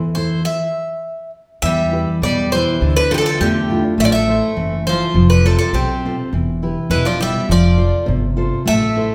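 A brief burst from the full band opens this bittersweet, brooding Greek folk excerpt, with a bright, metallic bouzouki up front carrying the melody over a fingerpicked steel-string guitar and a woody, dark upright bass. The band halts for a stop from 0.5 to 1.6 seconds, then settles into a steady, straight two-beat feel as the harmony moves from E minor through D minor add 9, A minor and F. At 1.7 seconds a second bouzouki joins with a lower supporting line, its picked double strings sitting behind the lead. The full-bodied dreadnought guitar shares the front of the mix with the lead bouzouki, whose octave-doubled strings give the melody a ringing edge, while the pizzicato bass anchors the bottom. The players sound as if they are performing live together in one large studio, bathed in a lush, reflective reverb.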